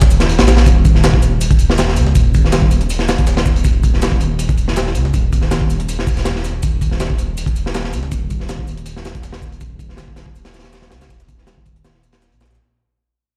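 A crunchy, saturated breakbeat kit with a tight kick and rolled-off top drives this frenetic, atmospheric drum and bass and jungle cut alongside a deep, rumbling detuned saw bass and a pitched-up, compressed sampler-style kit of filtered hats, shaker and snare, all heard through a large studio reverb as if played on a big sound system in a bare room, fading out from 0.7 seconds.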